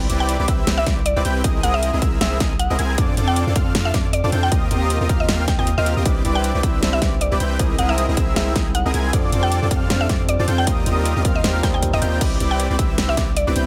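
A thick, detuned, compressed supersaw riff pumps against a deep sine 808-style bass and a punchy electronic kick in this playful, euphoric half-time future bass drop, joined by a dubstep kit with a huge snare and metallic hats, a woody FM mallet-like pluck melody trailing dub echo, a dreamy background lead playing arpeggios through chorus and digital delay, a worn, slightly out-of-tune, lightly overdriven tine electric piano from 6.0 to 12.2 seconds, and an ethereal pad that slips in at 13.1 seconds, all set in light reverb and digital ambience.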